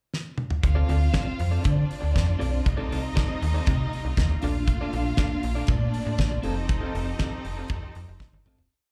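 A damped 70s drum kit sits up front with a fat snare and tight kick, opening with a fill at 0.1 seconds before settling into a four-on-the-floor disco beat with open hats on the off-beats, while a snappy, metallic slap-like FM bass plays a syncopated line with chromatic approach notes. This short, sultry, danceable disco piece at 119 BPM moves from a pickup bar into a pre-chorus over Dm7, Cm69, Bbmaj7 and F7, with a slightly broken-up electric guitar chopping sixteenth notes through tremolo, plate reverb and slapback echo. A rich chamber string section carries long high lines and a bright, biting symphonic string section holds a lush sustained pad, all heard through a venue's PA with club reverb, and the piece fades out from 6.7 seconds under a closing drum fill.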